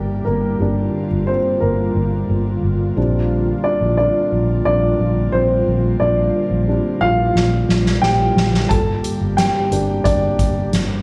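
Piano-driven pop at 89 BPM in 4/4 with a driving, earnest mood, cut from a longer piece that moves from G minor to Bb6 and back. A dark, woody upright piano carries the solo throughout with a slapback echo, over an airy, breathy pad with chorus and a round, foam-muted electric bass sitting up front. A soft-mallet drum kit with a fat snare and boomy kick enters at 7.4 seconds with a fill, all heard as a live gig through the club's PA.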